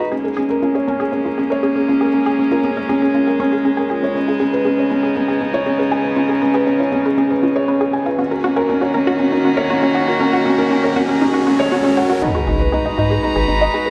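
Bathed in a wet recital-hall reverb, this cinematic, hypnotic piano and strings electronica excerpt at 119 BPM in Eb minor sets an up-front, felt-muted upright piano riff with audible action noise and tape echo over a distant, reedy string quartet holding sustained chords, a detuned sawtooth pluck playing arpeggios in the background through tape echo, and a very quiet round analog bass, while an electronic riser from 7.7 seconds and a swell build to a drop and impact at 12.2 seconds.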